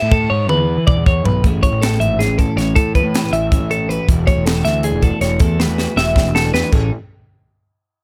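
Racing along at 318 BPM in a straight 7/8, this intricate, playful math rock and midwest emo excerpt in A major pairs a bright, twangy twelve-string electric guitar playing arpeggios with a fuzzy, overdriven picked bass and a crisp fusion drum kit with dark cymbals, a high-tuned snare and punchy kick that opens with a fill, while a second twelve-string guitar joins at 1.4 seconds with lush chorus on accompaniment, moving through E7sus4, Amaj9 and E9sus4 before landing on A after another drum fill, all in a dry, up-front mix.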